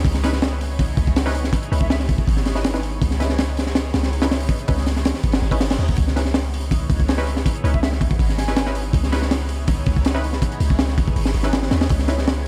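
A raw, dark drum and bass cut in a jungle vein opens at once with a crunchy, saturated breakbeat kit, its high-tuned snare and tight kick sitting up front with a gritty, rolled-off top, alongside a deep, boomy 808-style bass with a sine tone and a noise layer. Behind them, a lush unison pad built from detuned sawtooth and square waves holds a C#m9 chord through chorus and phaser, while a muted, filter-plucked dub chord stab enters at 0.2 seconds, its short decay trailing into chorus and dub echo. A breathy, reedy concert flute with vibrato and a crisp, close-miked attack surfaces in the background only briefly, first at 1.8 seconds and again around 7.7 seconds, its phrases carried off by dub echo. A very quiet electronic reverse cymbal rises at 5.4 seconds. Studio reverb gives the whole a shadowy sense of space, and the passage is lifted from a longer piece, staying in a single section throughout.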